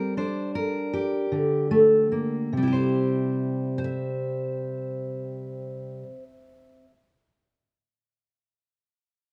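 A bright, full-bodied fingerpicked steel-string dreadnought guitar sits up front in this short folk passage, easing through a slowdown over the first 2.5 seconds on a G minor chord. At 2.5 seconds the harmony moves to C, lending a nostalgic yet uplifting feel. A moderate large-studio reverb and a dark production surround the guitar.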